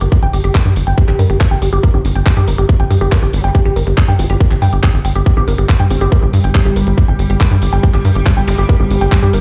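Psychedelic trance in G minor at 140 BPM, this driving excerpt sets an up-front tight electronic kick and a punchy sawtooth sequencer bass with tube saturation under a woody, wave-folded pluck riff with chorus, delay and sidechain pumping, garage handclaps and hi-hats, a nasal vowel-sweep wobble bass with dub echo sitting in the background from 1.9 seconds, a very quiet zap at 8.5 seconds, and an evolving, morphing wavetable pad with phaser and ensemble chorus arriving at 5.7 seconds, all heard as if played on a big sound system in a bare room.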